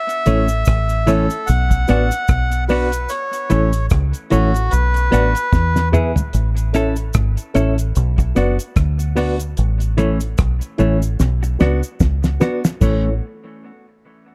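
A breathy, nasal melodica carries the melody with dub echo from the opening, then falls silent at 5.9 seconds in this sunny, uplifting roots reggae piece at 74 BPM in A major, swinging gently over a loop of A and B minor chords with a brief turn to E. Underneath, a cloth-damped, thuddy drum kit with a fat snare, tight kick and dark cymbals sits up front beside a deep, round, punchy fingered bass, while a clean, hollow-bodied semi-hollow guitar with dub echo and a mellow reed electric piano playing stabs through fast tremolo fill the middle, and a close, dry cabasa ticks quietly in the background. The drums roll into fills leading into the second section and again from 11.2 seconds, all within a small, dark-sounding room.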